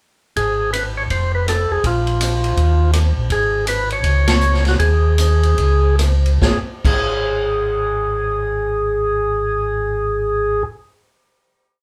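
Heard live in one room with a wet studio reverb, this short, soulful and bluesy soul jazz organ trio piece sets a percussive, key-clicking tonewheel organ melody of motif-based phrases over a round, dark organ bass in two-feel with chorus vibrato, both turning through a slow rotary speaker, while an acoustic big-band drum kit with a punchy kick and ride cymbal pattern swings. The trio slows down from 3.3 seconds and hits a band accent at 4.2 seconds, and the drums stop at 7.0 seconds as the organs hold a final note.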